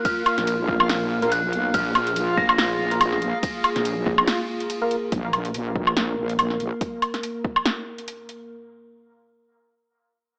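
Dark and cavernous, this deep dubstep fragment, cut from a longer piece, moves with a half-time, lightly swung feel. A heavy, saturated wobble bass built from detuned sawtooth and sine tones anchors the drop. Beneath it an electronic kick drum and an up-front deep house kit, with punchy snare, metallic hats, ride cymbal and woodblock, both carry overdrive and studio reverb. Above them an eerie, inharmonic synth bell with 12-bit sampler grit and dub echo plays a high melody, while a hollow, percussive organ stab sits in the background with lush chorus. A moody analog pad with ring modulation holds sustained chords throughout, and a reversed, granular backwards swelling texture shares the opening before a short break from 4.3 seconds and stops at 5.1 seconds. The recording has a dry, gritty hardware character, with transformer saturation and an AM radio tone.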